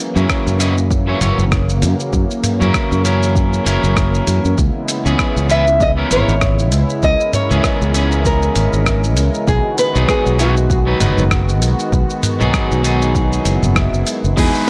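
Sunset chillout at a relaxed 98 BPM with a swung sixteenth-note feel, this excerpt drifts through F#7, C#m7 and B6 on a lush, detuned sawtooth pad with chorus, a twangy, slightly broken-up picked electric guitar through analog delay, and a dark, round fretless bass sitting up front. A gritty, compressed sampler-style kit of hi-hat, rim click, shaker and toms sits under a punchy, layered electronic kick, with a small fingerpicked nylon-string guitar carrying the melody through analog delay from 5.5 seconds. A background swell and downlifter enter at 13.4 seconds, and the whole recording has a dry, cassette-tape grit.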